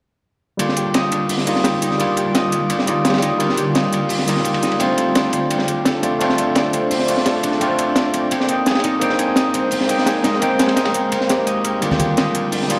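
Uplifting and warm, this liquid drum and bass excerpt moves at 171 BPM in Eb major, cut from a longer piece. An overdriven tine electric piano sits up front with a barky, gritty bite through a combo amp, carrying the accompaniment under a filter sweep and digital delay, while a concert harp rings out fingerpicked arpeggios through its own low-pass filter and delay. From 1.7 seconds a shimmering, ethereal ambient pad holds sustained chords in the background, detuned and granular with an octave-up shimmer, chorus and its own reverb. The crunchy breakbeat kit drives the groove with a saturated, high-tuned snare, dark cymbals and a rolled-off top, topped by a layer of crisp electronic hi-hats. A brief touch of close, dry congas with soft hands appears at 11.9 seconds. The harmony moves from Ebmaj9 through F6/A and Abmaj9 back to Ebmaj9, all set in a dark production with a wet concert hall reverb and small room ambience.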